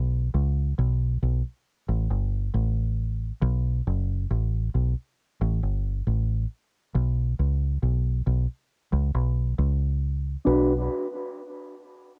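A slow, straight 4/4 pulse at 68 BPM anchors this spacious, deep dub reggae passage in B minor, cut from a longer piece. For most of its length the music sits in a break carried by a fingered electric bass, which is dark, round and punchy, with a foam-muted, direct and amped tone placed up front in its low register from F#1 to C#2. Over this, the harmony moves through Bsus2, Gsus2 and B5 before settling on Bm at 10.5 seconds. A mellow electric guitar appears only briefly at 10.4 seconds, clean and fingered, its sound shaped by a low-pass filter, cassette tape colouring and dub echo. The dry home cassette recording carries little reverb, keeping both parts close and immediate.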